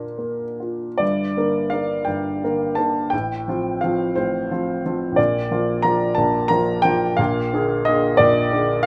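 Moving in a 12/8 metre with a free, rubato feel, this romantic nocturne drifts at roughly 47-62 beats per minute, counted in dotted quarters. A single baby grand piano carries the whole piece, its tone warm and present, sitting up front in a moderate studio reverb that lends a soft halo to the sound. Set in G minor, the mood is dreamy and nostalgic, with the piano ranging from a deep G1 up to Bb5. The harmony opens on Bb, settles into G minor at 1.0 seconds, passes through F over A, and returns to Bb before turning to Bb7 at 7.2 seconds. Cut from a longer classical work, this brief passage shifts into a new section after its opening second, leaving the phrase suspended on that final chord.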